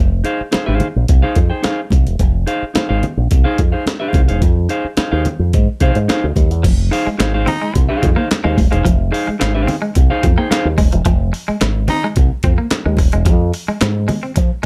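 A dark, lightly reverberant production frames this driving, sly funk excerpt in F minor at 108 BPM, where a punchy envelope-filtered fingered bass, a gritty, compressed breakbeat sampler-style kit with a thumpy kick and a clean picked guitar accompaniment sit up front over Fm7, bright, damped congas stay in the background, a twangy clean guitar riff with tremolo joins at 6.6 s, and a raspy, edgy baritone saxophone cuts in for brief moments at 7.5 and 11.9 s.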